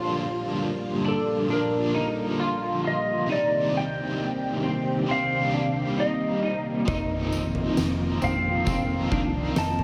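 A slow, straight 4/4 pulse at 67 BPM carries this hazy, haunting dream pop excerpt in C dorian, with the harmony moving from Gm9 to Cm9 and then to F7sus4 at 6.9 seconds. From the opening, an up-front, overdriven stack guitar with tremolo and a subtle chorus plays accompaniment, while a lush vintage string machine holds sustained sawtooth chords with a sub octave, slow attack and ensemble chorus. A clean, hollow-body semi-hollow electric guitar adds fingered arpeggios through ensemble chorus and tape echo. At 1.1 seconds a clean, twangy lap steel enters with the melody, using slide and volume swells, colored by tape echo. At 6.9 seconds a round, foam-muted vintage bass and an oversized, low-tuned drum kit arrive together, the kit bringing a fat snare, punchy kick, tambourine and toms with a gritty, saturated, pumping stone-room sound. A huge ambient reverb with a long decay wraps the whole mix in a dreamy wash.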